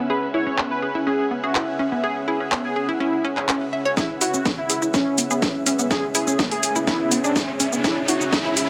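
Melodic techno with a driving, dark mood, this short cut opens on a moody, ring-modulated analog pad, a cloudy granular cloud pad in the background, a round analog pluck arpeggio and a thick, detuned unison lead with vibrato, all pumping with the sidechain, before a techno kit with cracking snare, metallic hats, shaker and handclaps enters up front at 0.6 seconds. A punchy electronic kick joins at 4.0 seconds for a build-up and drum fill, and a background riser enters at 5.6 seconds over a C#m7 chord, all set in light reverb.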